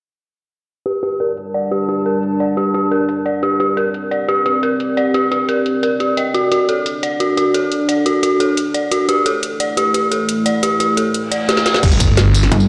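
This tense, aggressive dark technical drum and bass excerpt at 175 BPM opens at 0.9 seconds with an eerie, inharmonic FM bell arpeggio under a filter sweep and a layered kit of woody snare, metallic hats, crash and tambourine, joined by a moody, detuned analog pad over G5, Csus2, D5 and A5 chords, before a reverse cymbal and drum fill lead into an impact at 11.8 seconds, where a tight electronic kick and a swirling, thick phased saw bass hit, followed by a pulsing, heavy wobble bass in a large, reverberant room.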